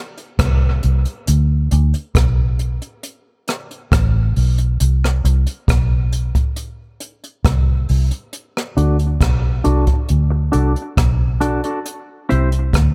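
A brushed drum kit opens this laid-back, hazy dub reggae piece at 0.2 seconds, with a boomy kick, hi-hat and rim clicks sitting up front in an acoustic studio room. A dark, round, foam-muted electric bass joins almost at once, amped and equally forward as it moves through low notes over a stripped-down break that drifts between chordless passages and a D5 power-chord colour. At 8.8 seconds a clean, picked electric guitar enters with a twangy, scooped, compressed tone, drenched in spring reverb and tape echo and shaped by a low-pass filter that sweeps through this closing stretch. The harmony settles on D before stepping to C, and a small room reverb gives the whole mix a close, intimate air. The recording is cut from a longer piece.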